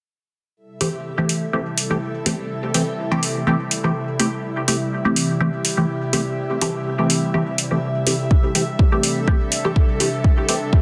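A lightly swung 4/4 pulse at 124 BPM opens this nocturnal, deep dub techno excerpt, carried at first by a metallic, up-front electronic hi-hat from 0.8 s, with a deep, tape-warm electronic kick drum arriving only at 8.3 s. Over a single A minor seventh chord, a muted, detuned filtered dub chord stab plucks sawtooth-and-square tones with a fast attack and quick decay, colored by phaser and a trailing dub echo. Beneath it, an airy, breathy pad holds sustained chords with a slow attack and long release, its soft triangle and sawtooth layers blended with noise and thickened by chorus. Far back in the mix, a bright, resonant texture bubbles through random filter steps on a single high note, washed in chorus and its own reverb. The pad, stabs and texture all pump against the sidechain, and the whole sits in a moderate echo-chamber ambience under a dense, heavily limited modern master.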